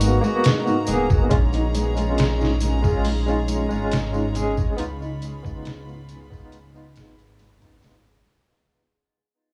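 Melancholic, cinematic trip hop at 69 BPM, fading out across its 8.3 seconds over G#m9, A#m7 and C#7, where a barky tine electric piano with tremolo and tape echo sits up front beside a gritty, pitched-down sampler-style drum kit with a thumpy kick and analog delay, a deep, rumbling detuned saw bass, a rich chamber string section holding bowed chords with light vibrato, a soft felt-muted upright piano playing arpeggios through dub echo in the background, and a faint vintage tambourine with analog delay, all wrapped in an echo-heavy small-room mix with vinyl crackle.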